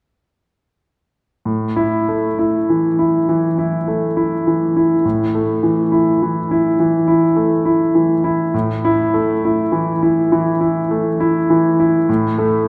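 A solo concert grand piano enters at 1.5 seconds, its clear, up-front tone rising out of a vast, echoing space. This is a romantic classical character piece, stormy yet bittersweet, moving at 68 BPM in 4/4 with a free, rubato feel. The piano keeps to a low-to-middle register, from A2 up to E4, so its deep bass carries much of the weight. Its sound is natural and close, while a long cathedral reverb lets each phrase hang in the air well after it is struck. The playing continues as one unbroken passage until 12.7 seconds, a brief portion cut from a longer work.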